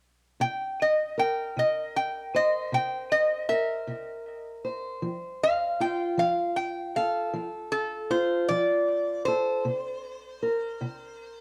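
Acoustic country blues with a laid-back, gritty mood, this short cut from a longer piece rolls along in a straight 12/8. A lap resonator guitar, played with fingerpicks and a steel bar, carries a metallic, nasal slide melody up front through the whole passage, from 0.4 to 11.4 seconds, touched with plate reverb and tape echo. Beneath it, a boxy parlour steel-string guitar fingerpicks the accompaniment in a moderate studio room, with dark production and a faint mains hum.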